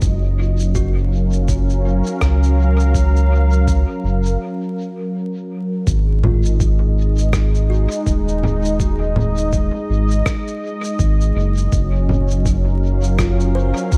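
A swung 16th-note groove at 82 BPM in 4/4 sets a peaceful, hazy ambient dub mood, with a muffled, thumpy, overdriven kick sitting in the background beneath pitched-down, compressed shaker, rim click and congas that carry overdrive and dub echo, and a break arrives from 4.4 to 5.9 seconds. Up front, a round, deep analog bass blends sawtooth, sine and ring modulation into a dark, evolving tone. Above it, a smooth, detuned pad with chorus holds Gbmaj7, moves to Ab7sus4 at 5.9 seconds and returns at 11.7, while a woody, hollow kalimba plucks soft, mellow arpeggios through tape echo, all under a dry, intimate sound dusted with vinyl crackle.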